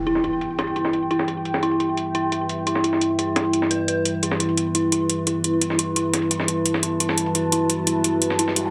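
A straight 4/4 pulse at 173 BPM drives this dark technical drum and bass cut in E minor, held on a single E minor chord from a longer piece with a futuristic, aggressive edge. A gritty, pitched-up breakbeat sampler kit with a compressed snare sits under up-front metallic electronic hi-hats, while an eerie, inharmonic synth bell plays warbling arpeggios through chorus, phaser and delay. Beneath them, a nasal, detuned analog pad holds sustained chords and a deep, full-bodied ambient pad adds reverb-soaked texture, with an electronic impact at the start and a noise sweep at 8.6 seconds framing a dense, heavily limited master in a wet digital room.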